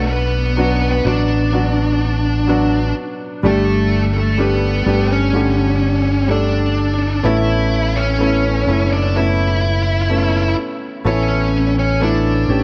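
Set in a small room with light reverb and a dark, warm production, this heartfelt, emotional pop excerpt moves at a slow 63 BPM over Bm, Gsus2 and Aadd9, with an up-front, compressed fuzz lead guitar carrying the distorted melody above a soft, mellow felt-muted upright piano and a round, punchy fingered electric bass.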